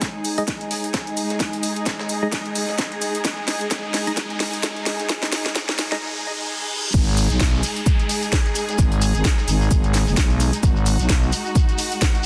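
A growling, thick FM bass arrives up front at the drop at 6.9 seconds, giving this swaggering, aggressive bass house excerpt its weight under a swung 4/4 groove. Before that, a build-up layers a warbling, lo-fi tape-like pad with chorus and phaser and a hollow, percussive organ stab treated with chorus, cassette tape and delay, both pumping with the sidechain until they stop at 6.0 seconds. A dark string section sustains bowed, woody chords throughout with vibrato, also pumping. An overdriven, punchy electronic kick and a house kit with a cracking snare, bright hats and crash cymbal sit up front. Behind them are a gritty, sampler-style breakbeat kit with a high-tuned snare, a riser, reverse cymbal and downlifter from 2.1 to 10.6 seconds, and a grainy, close shekere joining at the drop. The master is dense and heavily limited, with light reverb.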